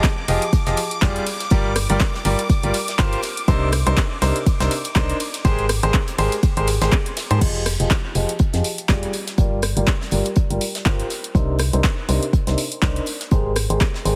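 This bittersweet, soulful piano house section at 122 BPM with a swung feel opens straight into a drop: a bright, intimate grand piano riff with audible action noise, low-pass filtering, dub echo and sidechain pumping sits up front over a layered electronic kick. Around it are an overdriven analog drum machine playing crash, handclaps, hi-hat, ride and rim click, a very quiet acoustic kit adding hi-hat and snare, and shimmering vintage string-machine violins holding chorused, pumping chords in the background. A hollow, dark, organ-like FM bass joins at 0.3 seconds. The strings drop out at 7.4 seconds as the Fm9, Gm7, Cm9, Abmaj9 cycle in F dorian repeats, all under light studio reverb and a heavily compressed radio sound.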